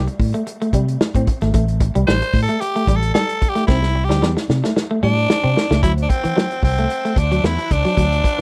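Cool and sly, this straight 112 BPM funk excerpt puts a raspy, gritty tenor saxophone solo up front over a twangy, slightly broken-up guitar riff with spring reverb, a dark, round, foam-muted fingered bass and a tight, roomy soul drum kit with a rolled-off top that plays a fill from 3.7 to 5.8 seconds, before a swirling, very quiet phased string machine adds bright sustained chords at 5.8 seconds in an otherwise dry mix.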